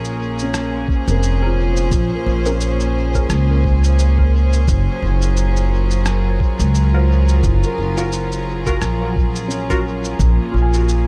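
A lightly swung groove is carried by a muffled, thumpy electronic kick and pitched-down cabasa and rim click, both with a sampler-style, tape-warm character and a small-room ambience, the cabasa and rim click trailing dub echoes in this deep, hazy ambient dub excerpt. Up front, a woody pizzicato upright bass on gut strings anchors the harmony, while a distant, earthy chamber string section sustains bowed chords with light vibrato, moving from Bbm7 to Gbmaj7 at 4.7 seconds. In the background, a felt-muted upright piano arpeggiates through a filter sweep, its action noise audible, and from 1.4 seconds a detuned sawtooth-and-square chord stab plucks through phaser, lush chorus and dub echo.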